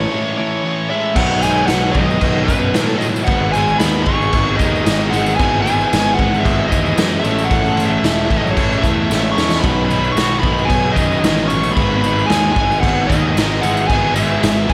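This sunny, driving classic rock excerpt opens with a bluesy, distorted lead guitar singing its melody high over a crunchy rhythm guitar, a very quiet hollow-bodied semi-hollow guitar and a punchy, fuzzed-out electric bass, all playing from the first moment. At 0.4 seconds a twangy, slightly broken-up second lead guitar joins in the background, its compressed tone carrying a slapback echo. At 1.2 seconds a raw garage drum kit kicks in up front, with a gritty, saturated sound, a punchy kick, a medium-tuned snare and crash cymbals under a rolled-off top, joined by a jingly tambourine tucked behind the band. The drums play a fill at 9.1 seconds as the chords cycle through A, B, G#m and E/G#. A lush hall reverb gives the whole band a big arena sound.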